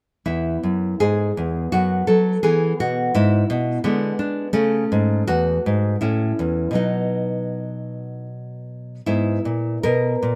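A fingerpicked nylon-string guitar sits up front, playing alone from 0.3 to 10.4 seconds in this short excerpt of a classical, baroque-style dance in E major. The piece has a radiant, flowing mood, moving in 3/4 with a rubato feel between roughly 73 and 87 BPM. The harmony travels from E through B5/F#, G#dim/D, A and B before settling on E/G#. The guitar's warm acoustic tone is wrapped in a moderate spring reverb.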